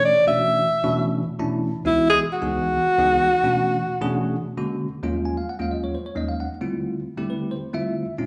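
Nocturnal and funky, this short jazz excerpt moves at 265 BPM in an odd 7/8 metre with a straight feel in B dorian, its harmony shifting from Bm11 through an altered A#7 to Ebm11 and Dm11. A clear alto saxophone with vibrato and a soft attack carries the up-front solo melody until 4.5 seconds. A bell-like, bright tine electric piano accompanies throughout, slipping in a brief fill at 1.2 seconds and carrying on alone once the saxophone drops out, all set in the lush reverb of a large studio where the band plays live together.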